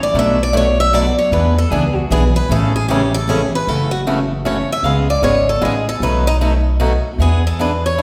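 A bright, boxy swing guitar opens this playful, lively cut from a longer jazz manouche piece, carrying the melody in a swung 3/4 at 153 BPM. At 0.1 seconds the rest of the band joins: a second swing-style guitar with audible finger squeak plays accompaniment, and a woody, thumpy upright bass with gut strings plucks a dark, pizzicato line. Both swing guitars and the bass sit up front. A steel-string dreadnought with fresh strings adds a full-bodied accompaniment from the background until 3.4 seconds. The harmony moves through Bm7, E7 and Amaj7, then F#m7, C#7, B7 and E7. A wet recital hall reverb gives the whole a church or concert hall space.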